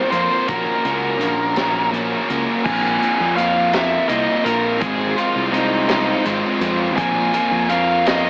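A biting lead guitar, a crunchy overdriven guitar with lush chorus and a thick fuzz guitar open this moody, restless indie rock excerpt in 6/8 at 55 BPM in Bb minor. At 0.1 seconds they are joined by a growly fuzz fingered bass and a vintage drum kit with a punchy kick, high-tuned snare and dark cymbals. From 2.7 seconds the overdriven lead takes a solo over chords moving through Bbsus2 and Fm/Ab while the two other guitars hold their riffs, with dub echo trailing the guitars and drums and spring reverb plus an AM radio sound giving the echo-heavy mix a hazy, lo-fi cast.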